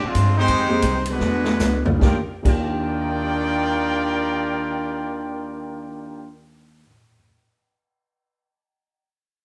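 Big band swing, energetic and joyful, in a short cut from a longer piece: a clear, tight trumpet section carries the melody with light vibrato over a bright trombone section's second line and a woody, thumpy pizzicato upright bass. The band slows through the opening while an up-front drum kit with a punchy kick plays a fill from 1.2 s to 2.0 s, moving from Fm11 through E13 to an Ebmaj9 chord, and the drums drop out shortly after. A baby grand piano with audible action noise and short sustain sits in the background from 0.7 s, with the band playing live in one stone room with moderate reverb.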